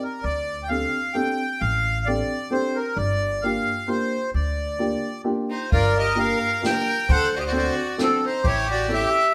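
This musette waltz in G minor at 132 BPM, cut from a longer piece, feels whirling and nostalgic, its 3/4 lilt carrying a light swing. A reedy accordion with slow beating sits up front with the melody, while a dark, mellow upright piano, woody and short in sustain and also close at hand, supplies the accompaniment. A pizzicato upright bass with steel strings adds an acoustic, growly low end under harmony that moves from D7sus4 to Gm7, then D7 and A7. At 5.5 seconds a bright, biting bowed violin joins with an intense second line touched with light vibrato, and at 5.7 seconds a distant, roomy brush kit enters with a boomy kick, a medium-tuned snare and hi-hat. The band plays live together, wrapped in the moderate reverb of a stone room.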